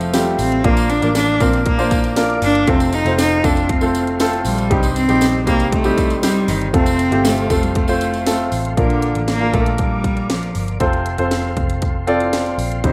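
A rough home demo mix with light studio reverb carries this hopeful, uplifting piano-driven pop passage, cut from a longer piece, where a rich, smooth bowed cello with vibrato sings the melody close over a polished grand piano sitting up front. Underneath, a dark, round foam-muted electric bass and an overdriven electronic house drum kit with a punchy kick and cracking snare drive the straight beat, while a jingly acoustic tambourine adds sparkle until 8.6 seconds. A clean tonewheel organ with key click, chorus vibrato and a slow rotary speaker enters at 0.6 seconds, holding warm chords in the background.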